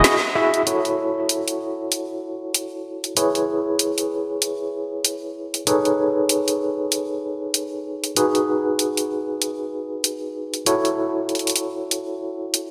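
Funky and playful, this glitch hop clip, cut from a longer piece, swings at 96 BPM in F# dorian, opening on a band accent as a bright, barky tine electric piano plays gritty, overdriven stabs through a combo amp with fast tremolo, a low-pass filter and delay over chords moving from F#m7 through E6, Amaj9#11 and G#m7. An up-front, layered electronic drum and bass kit adds a woody, overdriven snare and bright hi-hats, all set in a lush 2.0-second hall reverb with bright 1980s-style digital production.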